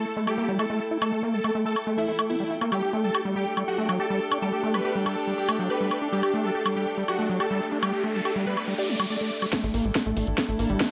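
Hypnotic and alien, this psychedelic trance passage, cut from a longer piece, opens with a squelchy, gritty acid bass riff under a huge detuned supersaw melody treated with phaser and tape echo, while an evolving, warbling wavetable pad and a reedy, period-style chamber string section fill in sustained chords and texture, all pumping against the sidechain. An up-front drum kit with a cracking snare, hi-hat and woodblock enters at 0.3 seconds, and an electronic riser climbs from 7.2 seconds. At 9.5 seconds a build-up arrives with a drum fill, a tight electronic kick and a filter sweep on the acid bass, joined at 9.6 seconds by a punchy wave-folded sequencer bass.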